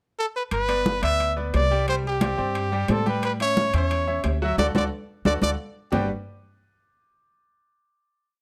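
A punchy, up-front trumpet sings motif-based song phrases with light vibrato and scooped notes over a joyful, danceable salsa, carried by a woody, thumpy pizzicato upright bass playing a tumbao that anticipates the chords, bright damped congas with slaps and open strokes, ringing metal-shelled timbales playing shell and bell patterns in the background, and a brilliant, polished grand piano montuno in octaves, with a drum fill and band accent from 4.6 to 5.9 seconds leading into the closing Gmaj7 chord, all in a close, detailed sound with light reverb.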